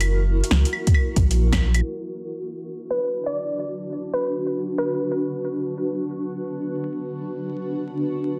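Drifting in free time, this nocturnal, melancholic future garage excerpt in B harmonic minor opens on an F#7 chord, with a deep sub bass, a layered drum kit of claves, metallic hi-hats and a fat snare, and an electronic kick that enters at 0.9 s and drops out at 1.6 s. The bass and kit fall away at 1.8 s as the harmony settles on Bm, leaving a cloudy, blurred granular pad pumping under a filter sweep, while a hollow, bouncy square-wave pluck with chorus and delay plays a brief melody from 2.9 s, everything wrapped in vinyl crackle and a dense, heavily limited master.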